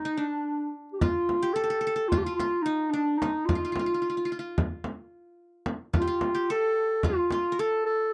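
A dry, close studio sound with light reverb frames this melancholic, soulful Turkish makam ensemble excerpt in 9/8, where a dark, distant clarinet carries the melody up front over the bright-edged, plectrum-plucked triple strings of a qanun playing a second line, while a deep, large frame drum sits forward in a small room from 1.0 to 7.4 seconds.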